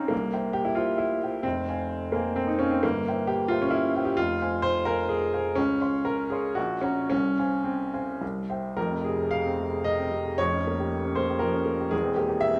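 A wet recital-hall reverb surrounds a clear, woody upright piano that sits up front, its long sustain and audible action noise giving the sound an intimate, natural presence. This bittersweet, brooding romantic character piece is cut from a longer work and moves in a rubato triple metre, reaching from the deep bass to the upper treble. Its opening phrase drifts through shifting minor and major harmonies before a new passage begins at 8.8 seconds and darkens toward a half-diminished colour.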